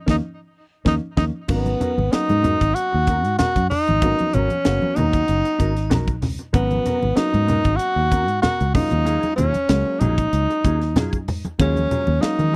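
This excerpt of nocturnal, funky electric jazz fusion opens with a band accent, as the crisp drum kit plays a fill and the dark grand piano adds a short fill of its own. At 1.5 seconds a mellow electric guitar joins in the background with clean, compressed stabs coloured by ensemble chorus, while the harmony settles on G#m11 before shifting to D#m11 at 8.8 seconds. Up front, a breathy tenor saxophone carries the melody as an intimate, whispered solo, with vibrato, scooped notes and a smooth top. Beneath it the fingered electric bass sounds round and foam-muted, and ringing congas played with soft hands sit behind the airy, polished kit with its high-tuned snare and punchy kick, all over a lightly swung sixteenth-note feel. The close, dry sound recalls a 1970s studio session.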